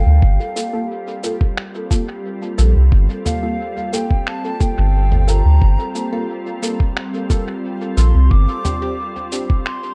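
A meditative, deep stretch of ambient dub, cut from a longer piece, moving in a straight 4/4 through a Gm7 chord that shifts to Bb6/G at 8.3 seconds. An airy, hollow wooden flute carries the melody in a high register, close-miked with vibrato and tongued notes, its phrases trailing into dub echo. Beneath it, a pure, organ-like pad holds calm sustained chords with a soft attack, thickened by ensemble chorus and its own reverb, while a dark, muted chord stab built from detuned sawtooth plucks decays through a phaser and dub echo. The soft, round sub bass sits up front with tube saturation and drops out at 8.5 seconds. A thumpy, muffled, pitched-down kick enters at 0.2 seconds, and a lo-fi sampler-style kit of cabasa, finger snaps and toms follows quietly with small room ambience and echo, all inside an echo-heavy digital ambience.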